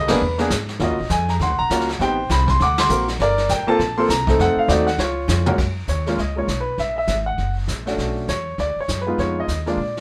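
A brisk swing at 201 BPM in 4/4 drives this relaxed, sophisticated jazz piano trio passage, cut from a longer piece and tuned slightly low at A4 = 439 Hz. The baby grand piano carries the melody up front with a warm, natural tone, ranging from deep in the bass register to high in the treble. It moves through a rich chord sequence of altered and extended harmonies before settling into F# major at 5.6 s. Beneath it, the pizzicato upright bass sounds woody and thumpy with steel strings. The vintage brush kit sits in a small room with dark cymbals, a punchy kick and a rolled-off top. The band hits accents together at 0.1 and 2.7 s, and a drum fill from 5.0 to 5.6 s leads into the second section, all wrapped in a light reverb.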